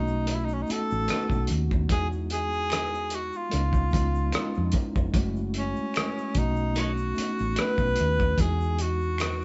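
A breathy, whispered tenor saxophone carries the melody up front in this soulful, introspective neo-soul R&B excerpt, its soft attack and light vibrato giving it an intimate, pop-style voice. It moves at a relaxed 74 BPM in 4/4 with a gentle swing on the sixteenths, over chords that drift from B9 through Emaj9, C#9 and F#m7 before returning to B9 and Emaj9. A mellow tine electric piano fills in the harmony with a clean tone heard through its built-in speakers, while a dark, round hollow-body short-scale bass, fingered and amped, anchors the low end. The cloth-damped drum kit enters at 0.3 seconds and sits up front with a thuddy, muffled sound, playing hi-hat, a tight kick and rim click with gritty saturation and a rolled-off top, while a very quiet egg shaker with finger snaps and handclaps adds texture from 0.1 seconds. A bright, twangy, picked electric guitar flickers in for only a moment at 6.8 seconds. 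The band sounds as if playing live in one room, with light reverb and a lo-fi character.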